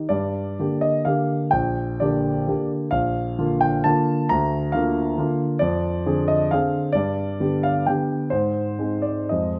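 A warm concert grand piano, up front with deep bass, plays alone through this wistful, capricious romantic triple-time dance excerpt, its dotted rhythms pushed and pulled by rubato as the harmony moves from G minor through B-flat to a closing A-flat chord, set in a moderate large-studio reverb.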